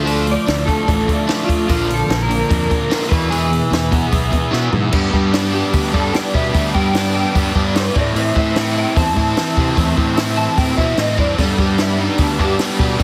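Restless, cool indie rock in 4/4, with a bright fuzz guitar riff and a warm overdriven guitar riff with chorus stacked over a fuzzy, overdriven fingered bass and a compact cocktail drum kit whose punchy kick, high-tuned snare and dark cymbals sit dry and up front. A dark, slightly broken-up guitar through a small old amp carries the lo-fi melody, while a very quiet, airy, detuned sawtooth pad holds evolving sustained chords high above. After a drum fill, a clean electric guitar solo enters at 4.9 seconds, and the whole mix has a close, heavily compressed radio sound.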